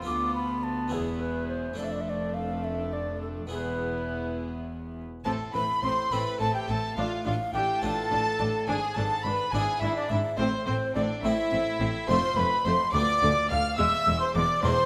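Classical baroque-style concerto movement, driving and dramatic in 6/8, in which an airy wooden baroque flute carries the melody beside a rich, gut-string violin section, while a nasal second violin line, reedy violas, a background cello section, a close, bowed double bass section and a dry, close-miked Italian-style harpsichord fill out the harmony in a moderate recital-hall reverb.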